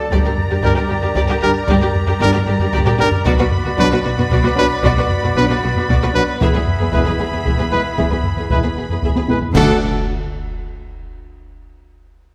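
A moderate scoring-stage reverb, about 1.7 seconds long, gives this majestic, triumphant cinematic cue a spacious hall around it. It is a short cut from a longer epic orchestral film score, moving at 76 BPM in a straight 6/8. A dark, woody violin section carries the high melody over a second violin line with a focused tone, while a distant, smooth viola section, close, even cellos and expressive double basses fill out a lush bowed string body. A mellow woodwind section holds sustained chords, joined by a shadowy French horn section in the background and a solo trumpet adding stabs with a soft-edged, classical tone. Heavy-stick taiko drive the pulse throughout, with fills punctuating the chord path from G minor through B minor and E to a D major arrival. At 9.6 seconds the full orchestra lands a group accent, as bright clash cymbals and concert bass drum, entering a moment earlier at 9.5 seconds, crash in alongside a brief, dry timpani hit.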